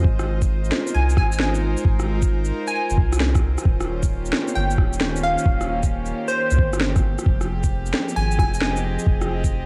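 Light reverb and a cassette-tape haze color this rainy, wistful future garage fragment, cut from a longer piece and set in 4/4 with a 66% swing on the 16ths. A clear studio string section holds bowed chords throughout, its pure, floating ensemble tone roughened by vintage 12-bit sampler grit and pumping under the sidechain, moving from Ab69 to Eb13 at 3.7 seconds and then to Fm9 at 7.3 seconds. Beneath it, a soft dub sub bass sits up front, deep and round with a sustained triangle-and-square body that also pumps. A muffled, thumpy sampler kick anchors the groove, while an electronic rim click, shaker and woody snare, overdriven and gritty, carry the sound of a large room. From 0.9 seconds a glassy wavetable pluck traces a crystalline, detuned melody in a high register, its fast-attack, decaying notes shimmering with chorus, analog delay, ring modulation and a moving notch.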